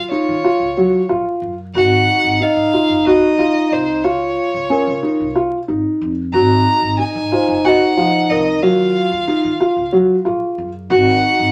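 Contemporary instrumental chamber music in 7/8 at 183 BPM counted in eighths, this short excerpt feels hypnotic and restless, cut from a longer piece. A felt-muted upright piano sits up front with soft, intimate arpeggios, its action noise audible, while a bowed solo violin carries the melody with smooth vibrato and an even, silky top. A mellow French horn in classical style plays a second line close beneath, and a woody pizzicato upright bass with steel strings anchors the low end. From 2.4 seconds a worn, bell-like celesta with medium felt hammers adds a delicate, sweet texture in the background, slightly out of tune. The harmony moves from Ebm9 through Ab7 and Dbmaj7 before settling on Ab5 at 10.9 seconds, all set in a wet studio reverb with a layer of vinyl crackle.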